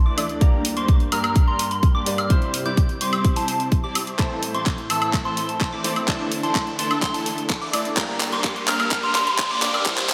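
A straight 4/4 pulse at 127 BPM drives this euphoric, emotional festival progressive house build-up, cut from a longer piece, where a punchy, up-front electronic kick and a layered pop kit of handclaps, warm hi-hats and woodblock roll into a drum fill from 4.2 seconds, beneath huge, bright supersaw chords with phaser, a soft FM synth bell melody, catchy square-wave plucky lead arpeggios in the background, a thick slow-attack unison pad, a clear but worn grand piano accompaniment, and a very quiet riser entering at 6.8 seconds, while a filter sweep runs throughout and the sidechain-pumping pad, lead, supersaw and piano sit in a dreamy hall reverb over Gm, C, Am and Dsus2.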